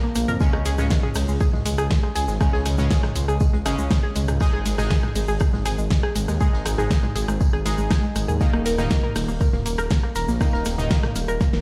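A steady, straight 4/4 pulse at 120 BPM drives this dramatic, cinematic melodic techno excerpt, anchored by a deep, tape-warm electronic kick up front and a layered deep house kit with a fat snare, rim clicks, hi-hats and toms. A distant, roomy soft-mallet kit and a grainy cabasa sit in the background beneath a dark, rumbling detuned saw bass, while a warbling, lo-fi pluck spins arpeggios and punchy, nasal synth brass stabs add chorus and phaser colour, with both pumping under sidechain compression and trailing tape echo. The chords move from Db to Ab to Eb, the whole mix rings in a bare stone room, and a drum fill arrives at 11.4 seconds.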